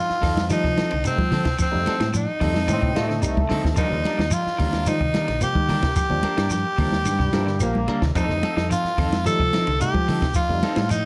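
A straight 4/4 afrobeat groove at 110 BPM in F mixolydian, hypnotic and funky, is carried by a dry compact cocktail drum kit with a high-tuned snare and dark cymbals, a fingered electric bass, damped high-tuned congas, a grainy shekere and very quiet woody claves, while a clean electric guitar plays arpeggios through lush chorus and analog delay, a second clean guitar adds stabs with spring reverb and delay, and a barky, lightly overdriven tine electric piano with medium tremolo sits in the background under a raspy, forceful tenor saxophone melody up front, joined by a bright trombone section with a soft attack at 2.7 and 7.1 seconds, all over F7 and Ebmaj7 chords in a small room with light reverb.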